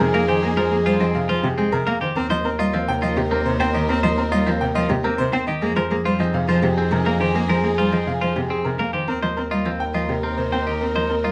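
A steady, straight 3/4 pulse at 104 BPM drives this hypnotic, meditative minimalist classical piece in F minor, cut from a longer work and alternating between Fm9 and Cm7/Eb across its 11.3 seconds. A brilliant, short-sustained grand piano carries the melody over twangy picked electric-guitar arpeggios, while a mellow soprano saxophone traces a quiet second line in the background. A rich bowed cello supplies the accompaniment, a focused, distant double bass holds the low end with vibrato, and a lush, soft-attack string section sustains chords behind them, all in a moderate large-studio reverb captured with close, detailed microphones.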